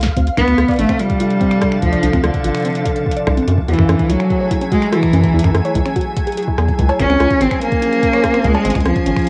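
A rich, bowed cello with vibrato carries the melody up front in this eerie, cerebral IDM excerpt at 145 BPM, colored by plate reverb and cassette tape as the chords move from Dm7 through F#m9 to C#maj7. Beneath it sit a round, deep analog bass and an overdriven soft electronic kick, alongside a dry analog drum machine that opens on a drum fill with crisp snare, metallic hats, cowbell, finger snaps and rim click, while a warbling lo-fi pluck plays chorused arpeggios with analog delay in the background. An icy, crystalline pad enters at 1.0 s and a flickering granular texture hovers in the background, all within a home cassette recording with moderate studio reverb.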